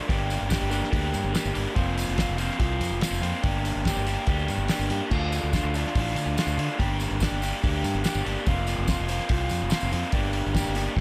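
A raw, overdriven garage guitar sits up front, double-tracked, picked and lo-fi, carrying a riff over Gm, Fsus4 and Dm in this bittersweet, cool indie rock passage cut from a longer piece. A round, dark fingered bass and a thuddy, cloth-damped acoustic kit with a fat snare, tight kick and rolled-off top enter at 0.1 seconds, while a jingly tambourine stays in the background. The sound is dry, with little reverb.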